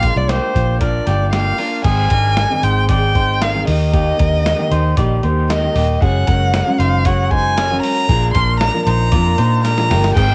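A dark, up-front violin carries the melody with expressive vibrato and portamento, floating over a bright, nostalgic slice of jangly indie pop at 115 BPM, cut from a longer piece and recorded at home on cassette in a lightly reverberant room. Fingerpicked jumbo acoustic guitar gives full-bodied accompaniment, a twangy, slightly broken-up electric guitar spins plate-reverbed arpeggios, and a round, punchy foam-muted bass sits up front beneath a compressed, pitched-down sampler-style kit with a thumpy kick. The chords move from Bb through Ab, Eb and Gbadd9 back to Bb, and a drum fill arrives at 9.6 seconds.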